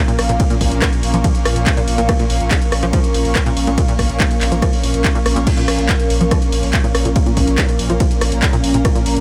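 Driving peak-time techno at 142 BPM in Bb minor, this intense, dark excerpt layers a swarming, detuned drone and an ethereal, airy pad with chorus, phaser and reverb over a tight, sawtooth sequenced riff with tape echo, a saturated sub bass that enters at 0.2 seconds, punchy analog drum-machine hats, claps, rim clicks and cymbals, and an electronic kick arriving at 0.4 seconds. Sidechain pumping touches every part but the kick, though on the drum machine it affects only the hats and cymbals, all within a digital ambience.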